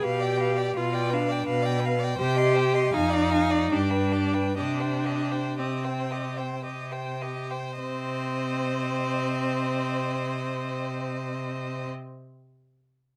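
In a triple metre with a freely breathing rubato, this slow, romantic movement for string quartet unfolds with an elegiac, melancholic mood, taken from a longer piece. One violin sings the melody high above the ensemble with a smooth, even, vibrato-laden tone, while a second, clearer-sounding violin traces a supporting line just beneath it. A focused viola fills in the accompaniment and a cello anchors the bass, both with a full, rich vibrato, and they sit noticeably up front in the blend. The harmony moves from a dominant seventh through C minor, a diminished chord and back to the dominant before settling again on C minor, and the tempo gradually slows from 1.1 to 7.8 seconds. At 7.8 seconds the music passes into a new section, with all four bowed instruments playing together to the close. Close, detailed microphones and a touch of light reverb give the quartet an intimate, finely etched sound.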